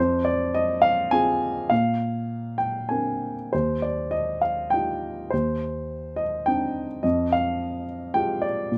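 In a rubato 3/4 that drifts between 94 and 109 BPM, this moody, bittersweet fragment of lyrical classical solo piano features a dark, mellow baby grand captured close and up front, its short sustain and audible action noise giving an intimate, dry sound as the harmony moves from Fm through Bbadd9, Ebadd9 and Cmadd9/Eb to Fmadd9 across its 8.8 seconds.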